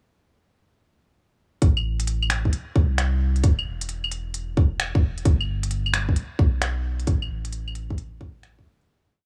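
A dry, gritty hardware sound with a small room ambience frames this short, complete future garage piece in A minor at 132 BPM, its 4/4 groove swung on the sixteenths. The mood is wistful and ghostly. From 1.6 s an electronic kick drum sits up front with a tight, muffled two-step thump, while an organic electronic kit adds a skittering, shuffled beat of smooth closed hi-hats, claves and finger snaps. Beneath them a soft dub sub bass, deep and round with a triangle and square wave tone, plays long gliding, sustained notes with a sidechain pumping effect. The groove runs to 8.9 s and fades out from 6.5 s.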